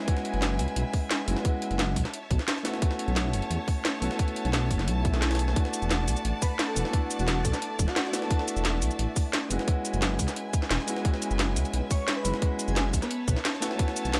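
Liquid drum and bass at 175 BPM, this lush, dreamy excerpt from a longer piece sets a smooth, vintage grand piano with tape echo and a clear, bowed string section pumping under sidechain over chords moving from F#9sus4 through B9sus4 and E9sus4. An overdriven, tight electronic kick and a cracking drum and bass kit with metallic hats and cabasa sit up front beside a deep, rumbling detuned saw bass, while a gritty, pitched-up jungle sampler-style kit with filtered hats and snare stays in the background. A very quiet electronic swell sounds at 5.0 seconds, and an airy, soft lead treated with chorus, cassette tape character and tape echo carries the melody from 6.4 seconds, all in light reverb.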